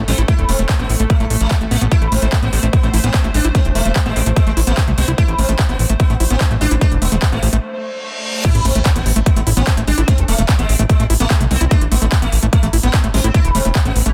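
Psychedelic trance at 147 BPM in A harmonic minor, psychedelic and driving, where a punchy up-front electronic kick and crisp-hatted dance kit with handclaps and crash drive a fat, saturated, detuned analog bass, while a buzzing, shimmering sitar melody with phaser and dub echo pumps alongside a squelchy, screaming distorted acid riff with tape echo that pumps in the background, all over a pulsing gated triangle texture of sustained chords that stops at 8.5 s, as a reverse cymbal and sub drop mark the break into a drop at 8.4 s and a very quiet metallic FM wobble bass joins at 10.0 s, all in a dense, heavily limited modern master.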